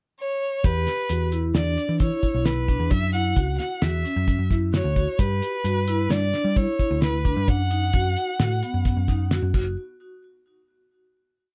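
Progressive instrumental band music in an uneven 5/4 meter at 131 BPM, this short, complete piece feels tense and brooding over a straight pulse, moving through Em7, F#5, G and B/F# before closing on a final hit from 9.8 to 11.5 seconds. A rich, focused solo violin opens with a pickup at 0.2 seconds, carrying a bowed, motif-based melody built in sentence-like phrases with vibrato. At 0.6 seconds the band enters: a cloth-damped, thuddy drum kit plays an up-front 5/4 groove with a fat snare, tight kick, dark cymbals and a rolled-off top. A hollow-body short-scale electric bass, picked and amped with a round tone, sits up front driving a syncopated riff. A ringing, metallic vibraphone struck with medium hard mallets adds an arpeggiated ostinato with medium motor vibrato and a digital delay, positioned mid-forward. Light reverb and a dark, warm production give the whole piece a close, shadowy character.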